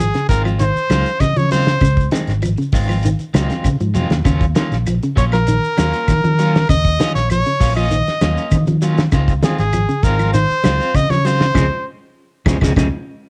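Afrobeat at 99 BPM, defiant and funky, with a bright, punchy trumpet singing an up-front solo melody full of vibrato and scooped notes over a round, dark fingered electric bass and a cloth-damped, thuddy drum kit with a fat snare and tight kick that plays short fills at 3.5 and 12.8 seconds. A clean semi-hollow guitar fingers hollow-body arpeggios, while a slightly broken-up second guitar adds picked stabs through tremolo, and very quiet, low-tuned congas play alongside a grainy shekere and woody claves that sit in the background as the chords move from Dbmaj9 to Ebm9 and back. The home cassette recording has light reverb and tape colour on the guitars and drums, and the band hits an accent from 11.6 seconds as this cut from a longer piece closes.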